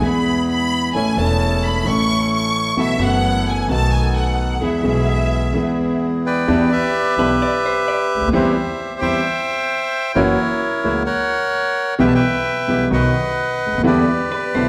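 Sultry and melancholic, this rubato tango at 130 BPM in 4/4 opens in E major with a lush, expressive bowed violin section carrying a second line over an intimate concert grand piano, whose action noise and deep bass come through, plus a woody, dark pizzicato upright bass and bright, reedy bandoneon stabs. The violins fall away at 6.0 seconds, and a smooth, shadowy bandoneon takes the melody from 6.3 seconds as the harmony turns to E minor at 6.5 seconds. A clean, compressed hollow-body jazz guitar adds brief background phrases, and a generous hall-like reverb gives this cut from a longer piece a spacious sound.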